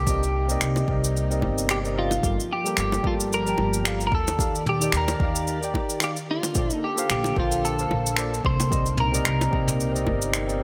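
This smooth, wistful sunset chillout opens with a clean, picked electric guitar carrying the melody up front, compressed and scooped and dressed in analog chorus and digital delay. Beneath it sit a silky, vintage string machine holding slow-attack chords in the background and a woody, thumpy pizzicato upright bass on gut strings. A tine electric piano adds warm, direct accompaniment through a low-pass filter and delay, while a deep, overdriven electronic kick is layered with a brushed jazz kit of cabasa, finger snaps and toms. Low-tuned, close and dry bongos played with hard hands join at 0.8 s. At 111 BPM in 4/4 with a light 16th-note swing, the harmony moves from Cm7 through Gm7, Ebmaj7 and Bbmaj7 before returning to Cm7, all in a bright 1980s-style digital production with plate reverb and small room ambience, cut from a longer piece.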